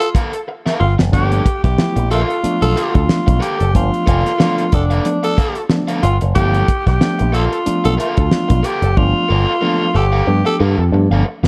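A strutting funk groove at 92 BPM in 4/4 with a light sixteenth-note swing opens on a break, as the damped 70s drum kit, dark and dry with a fat snare and tight kick, plays a fill from 0.5 seconds before the bright, punchy envelope-filtered picked bass enters at 0.8 seconds and a worn, slightly out-of-tune tine electric piano adds lightly overdriven stabs from 1.1 seconds. Over a G9 chord in G mixolydian, a raspy alto saxophone carries the melody with scooped notes, vibrato and slapback echo, while a growling, breathy tenor saxophone plays a second line and an overdriven semi-hollow guitar supplies hollow-body accompaniment. Studio reverb surrounds the group, and the drums play another fill from 9.0 seconds to the end of this clip from a longer piece.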